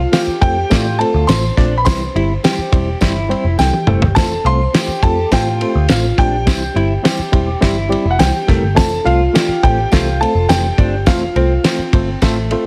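A clear baby grand piano melody opens over a ringing vibraphone second line and a dark, foam-muted picked bass, joined almost at once by a reedy electric piano with fast tremolo, a clean, direct guitar riff with subtle chorus, a fat-snared soul drum kit that plays a fill at 3.6 seconds, and a jingly tambourine in the background, all giving this joyful uptempo 1960s-style soul passage a heavily compressed radio sound with light reverb.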